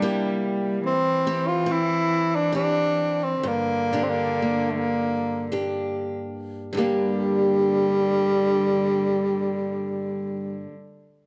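A tenor saxophone, a bowed cello and a picked steel-string acoustic guitar sound together from the opening moment of this haunting, mournful Celtic slow air, an excerpt cut from a longer piece. Set in G dorian in 3/4 at a rubato 46-74 BPM, the music slows from 0.8 to 6.7 seconds as the harmony moves from C7 through D9sus4/E to settle on Gm. Up front, the solo saxophone carries the melody in a classical style, its tone warm with a light vibrato. Beside it the guitar supplies a woody accompaniment on old strings, while a single cello plays a pure, floating second line sul tasto with a soft attack, sitting lower in the balance. A new section begins at 6.7 seconds, and the dark production is bathed in the wet reverb of a recital hall.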